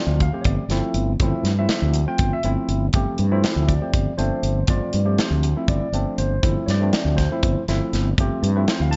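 A dark, round fretless electric bass sits up front in this bright, soaring electric jazz fusion excerpt, which moves in 7/8 at 241 BPM over a single G13sus4 chord, tuned to A4 = 444 Hz. A barky tine electric piano, lightly overdriven through a combo amp with subtle chorus, provides accompaniment from F3 to A5. A mid-forward modern studio drum kit with a punchy kick, medium-tuned snare and hi-hat enters at 0.2 s, all in a dry sound with little reverb and the top end rolled off above 7.7 kHz.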